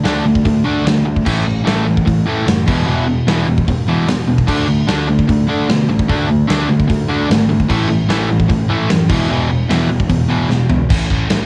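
Punk rock at 149 BPM in a straight 4/4, rebellious and energetic, cut from a longer piece and lasting about 11 seconds. A crunchy, bright overdriven guitar sits up front playing the riff, joined by a sludgy distorted guitar tucked in the background with a warmer, overdriven tone, also playing the riff. A picked electric bass, amped and growly, adds punchy low end beneath them from 0.1 seconds. The big rock drum kit is acoustic and natural, with bright cymbals, a medium-tuned snare and a punchy kick up front, and a drum fill at 10.5 seconds. The chords move through D5, A5 and E5 power chords, and the home recording on cassette gives the guitars and drums a tape-worn character under light reverb.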